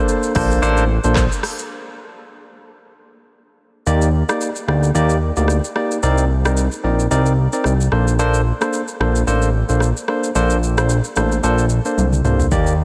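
A dreamy, reverb-soaked mix gives this breezy, sunny afrobeats excerpt in Bb major a huge ambient space at 111 BPM, with a gentle 16th-note swing. A bright, barky tine electric piano sits up front, spelling out lush chords from Bbmaj9 through Ebmaj7 and Cm9. A fat, nasal analog bass with a plucky filter and detuned sawtooth-and-square bite joins it, over a produced electronic afro-pop kit of deep kick, crisp hi-hats, handclaps, rim clicks, shaker and toms. After an early break, the kick drops out from 3.9 s until 12.5 s, and a drum fill arrives at 12.0 s.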